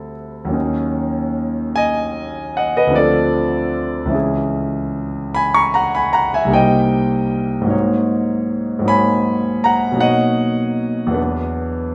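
In a rubato 9/8 lilt, this serene, dreamy impressionist classical passage for solo concert grand piano, cut from a longer piece, drifts through lush extended harmonies from D9sus4 through Dm7, G#m11 and Bmaj9 to E7sus2, its clear, natural tone sitting up front with a deep bass and long sustain, bathed in a wet recital hall reverb and a dark, warm production.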